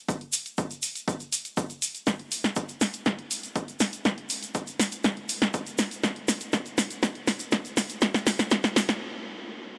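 A straight 4/4 techno pulse at 121 BPM drives this short, melancholic and hypnotic fragment cut from a longer piece, with every part starting at 0.1 seconds. An up-front electronic kick drum, layered and punchy, is re-recorded in a small room, with a high-pass filter shaping both the drum and its room sound. An analog drum machine supplies dry hi-hat and a punchy snare, also placed up front, while a grainy, bright acoustic egg shaker adds a small-room sparkle beneath them. The passage works as a build-up, with a drum fill running from 2.1 seconds. The kick drops out at 8.6 seconds, and the drum machine and shaker cut out at 9.0 seconds, leaving a brief stop. A huge ambient reverb with a long tail surrounds the gritty hardware recording.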